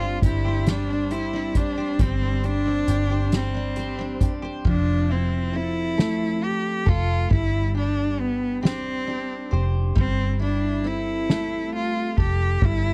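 A romantic, heartfelt six-eight pop ballad at a slow 45 BPM, this short cut from a longer piece sets a rich, smooth bowed cello up front, its vibrato singing the melody over a double-tracked, full-bodied jumbo acoustic guitar picking the accompaniment. A clean, compressed electric guitar recorded direct sits in the background with arpeggios through a harmonic tremolo, while a round, foam-muted vintage bass holds the low end up front and a soft-mallet drum kit brings a boomy kick, fat snare, dark cymbals and hi-hat from 0.2 seconds. The dry, close 1970s-style studio sound frames chords moving from Gsus4 to Fmaj7, back to Gsus4 and on to C6.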